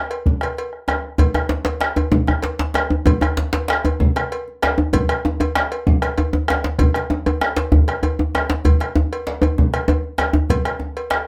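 A round, band-limited bombo and a metallic, close and dry cowbell open this short cut from a longer West African drum ensemble piece at 0.1 seconds, with a medium-tuned djembe struck with hard hands joining almost at once. The feel is earthy and driving, set in 12/8 at 129 beats per minute, counted in dotted quarters, with a straight pulse. At 1.2 seconds a second djembe enters, also medium-tuned and hit hard, and it sits close and up front as the most prominent voice in the mix. The bombo also sits forward, with a slightly vintage character, while the first djembe has a small-room quality and the cowbell rides lower in the balance. A short, wet small-room reverb surrounds the ensemble, giving the acoustic drums a compact, lively space as the four parts play together until the end of the excerpt.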